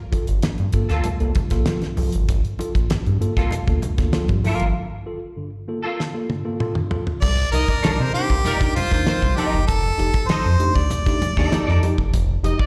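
A dry 70s drum kit with a fat snare and tight kick, joined by ringing congas under soft hands, drives a sly, straight funk groove at 97 BPM in G minor, with a round, dark analog bass up front, worn, slightly out-of-tune tine electric piano stabs with light overdrive and slapback echo, and bright, clean semi-hollow guitar accompaniment with ensemble chorus, until a break from 4.8 seconds and a drum fill from 6.0 seconds lead at 7.2 seconds into a clear harmonica melody with light vibrato, joined at 7.5 seconds by a tight vintage horn section line, heard as a live gig through the venue's PA in this cut from a longer piece.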